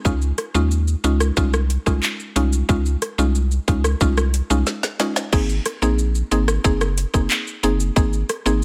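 A deep, dark analog bass sits up front in this sultry, hypnotic dancehall excerpt at 91 BPM, alongside a tight, overdriven island pop drum kit with a woody snare, metallic hats, handclaps, rim clicks, shaker and crash, plus a bright, percussive mallet-like synth pluck with chorus, all moving from Dbadd9 to Abadd9 at 5.3 seconds after a drum fill beginning at 4.7 seconds, wrapped in digital ambience.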